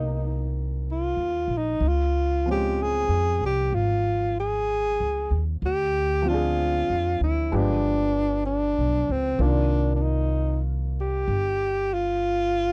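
The rhythm moves at a slow 64 BPM in 4/4, with a lazy swing on the eighth notes that sets a smoky, intimate jazz ballad mood in C minor. A breathy, close-miked alto saxophone carries the melody up front as the soloist, its clear tone shaded with vibrato as it stays between C4 and Ab4. Underneath, an acoustic upright bass with steel strings plays pizzicato in a low register, woody and also up front. A baby grand piano with a natural, warm sound fills in the accompaniment further back in the mix. The harmony drifts from Ab9 to Dbmaj7, then through Dm7b5 at 5.6 seconds and G7b9 before settling on Cm11 at 9.4 seconds. All three parts play together throughout this 12.7-second excerpt, captured as a dry, close studio recording in a 1970s style with little reverb.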